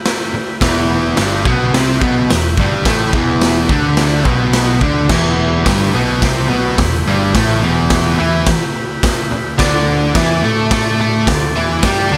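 A buzzy vintage combo organ opens this short garage rock cut, holding clean sustained chords with a light vibrato in the background. Almost at once a raw acoustic drum kit comes in up front, its punchy kick, medium-tuned snare, hi-hat and crash cymbal sounding gritty and saturated in a bright, pumping stone room. A double-tracked fuzz guitar follows at 0.3 seconds with a compressed, distorted riff, and a round, amped picked bass settles beneath it. The mood is menacing and swaggering, moving at 107 BPM in a straight 4/4 in E minor, with the music shifting into a new section at 5.1 seconds and the harmony moving from E minor to a D5 chord at 9.6 seconds. A light reverb gives the whole band a touch of space.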